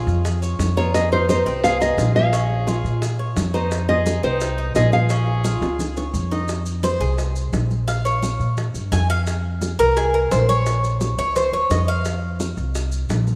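The Cuban tres stands out, its metallic, picked double strings with some octave-doubled courses carrying arpeggios up front before taking a solo from 6.5 seconds until it falls away at 12.4 seconds. This sultry, danceable slice of Cuban son and guajira moves at a brisk 173 BPM in F minor, cut from a longer piece. In the opening section, a dark, fingerpicked nylon-string guitar with audible finger squeak leads the melody up front, while a punchy trumpet with scooped notes plays a second line beneath it; both stop at 6.1 seconds, partway through a drum fill. A woody, thumpy pizzicato upright bass sits prominently underneath, joined by tight, high-tuned vintage bongos in the background, very quiet close-miked congas with a damped, thick skin, and grainy, distant maracas. The harmony rocks between Bbm7 and Fm7 before the solo section turns to sparser F5, Bb5 and Bbm chords. A wet plate reverb and a rough home-demo mix give the recording a loose, informal sound.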